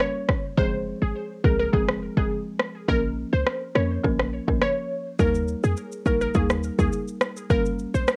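A light reverb and a cassette-taped home-recording haze frame this hypnotic, bouncy dancehall cut in F minor, moving at 104 BPM in a straight 4/4. Up front, a layered, overdriven deep house drum kit drives it with a punchy kick, rim click and shaker, and a short, tight 808-style bass with a sine body and noise layer enters at 0.6 seconds. A woody, dark folk marimba struck with medium hard mallets supplies dry, rustic accompaniment, its tape-tinged tone sitting in the middle register. Over it, a glassy wavetable pluck carries the melody, crystalline and detuned with a sub octave and filter sweep, dressed in chorus, cassette tape and analog delay. The harmony runs from Fm through Bbm and Eb to a closing Gdim, and the passage is cut from a longer piece.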